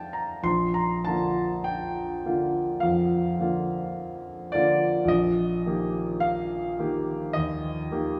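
A warm, smooth grand piano opens this short excerpt alone, setting a tender, serene mood in a romantic classical nocturne. The tempo is slow at 52 BPM in 4/4, and the playing moves with a free rubato feel in Bb major. The harmony rests on Bb from 0.5 seconds before shifting to Eb over a Bb bass at 5.1 seconds. The piano spans from Bb1 up to C6 and sits up front, with a vintage character to its tone. A wet recital hall reverb with a 1.8-second decay surrounds the instrument, giving the sound the spacious air of a church or concert hall over the 8.2 seconds heard.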